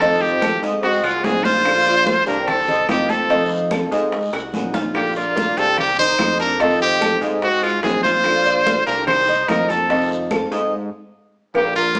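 A sunny, warm stretch of Cuban son and guajira in Bb major at 146 BPM, cut from a longer piece, where a brilliant, punchy trumpet sits up front carrying the melody while a lush violin section bowed with vibrato holds a second line in the background. A fingerpicked flamenco guitar with audible finger squeak, a metallic double-strung Cuban tres playing arpeggios and a fat, detuned sawtooth analog bass with a filter sweep fill out the harmony, as high-tuned congas, very quiet bongos and cowbell, woody claves and a raspy guiro drive the rhythm. The band plays live in one stone room with a wet reverb and a small-speaker sound, with a drum fill at 4.3 seconds and a full stop at 10.7 seconds.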